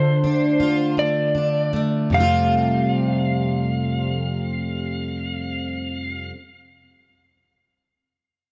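A swaying 6/8 pulse at 51 BPM, counted in dotted quarters, slows over the first 2.1 seconds of this brief, heartfelt pop fragment in F major, moving from Dm to Fadd9. A picked, plugged-in steel-string acoustic guitar, full-bodied and jumbo in tone and double-tracked, carries the accompaniment up front, while an electric slide guitar sings the melody in a narrow high register with a slightly broken-up, compressed edge and a touch of delay. The mix is dark and rounded, set in light studio reverb.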